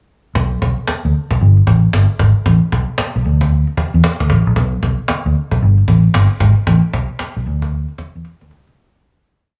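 Hard-swung sixteenths at 114 BPM drive this confident, bouncy new jack swing R&B breakdown, where a dark, round, foam-muted vintage electric bass sits up front with a swung synth-funk line with muted ghost notes and chromatic approach notes, while a woody cajon played with hard hands in a small room supplies a drum-machine-style beat with faint snares and a clap-layered snare, adding a drum fill from 8.2 seconds as the piece fades out from 6.7 seconds.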